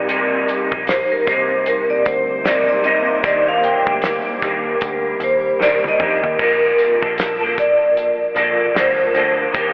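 A vibraphone solo rings out over a bright, slightly broken-up guitar with warbly chorus drift and a dark foam-muted bass deep in the background in this laid-back, nostalgic bedroom-pop excerpt in Bb major at 76 BPM with a lazy 16th-note swing, joined by a damped 70s drum kit with 12-bit grit, a faint jingly tambourine and a cloudy granular pad from 1.8 to 6.4 seconds, with a drum fill at 5.6 seconds leading into a Bbmaj7 as the whole dreamy, telephone-filtered mix sits soaked in lush hall reverb.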